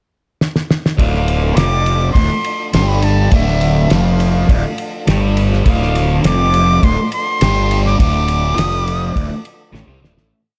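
A cloth-damped, thuddy drum kit opens this short, mysterious psychedelic rock piece with a fill at 0.4 s, and at 1.0 s a straight 103 BPM groove in D minor begins. A double-tracked, up-front fuzz guitar plays an octave riff, doubled by a punchy, overdriven fingered bass with a dotted figure, while a very quiet tonewheel organ with key click and fast rotary speaker holds a mellow pad. Above them, an airy, reedy concert flute with vibrato and slapback echo sings trippy motif-based phrases, and the piece fades out from 8.0 s, with the drums playing a final fill at 9.7 s.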